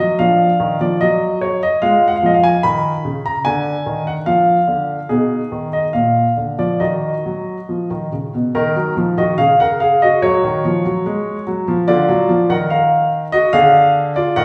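A solo grand piano opens this short cut from a classical-period sonatina, played at 72 BPM in 2/4 with a rubato feel in E-flat minor, yet the mood comes across as graceful and cheerful. The piano has a warm, intimate and natural character, with long sustain, audible action noise and an up-front presence. Its range runs from Bb2 to Cb6, and the harmony moves through colours such as Db9, Ddim and Abm/Cb before settling on Ebm around 6.8 seconds. The opening idea then returns at 8.5 seconds, passing through Gb5 and Bb/D before a final Ddim at 13.5 seconds. A wet recital hall reverb surrounds the playing, heard from further back in the room with a touch of small-room ambience.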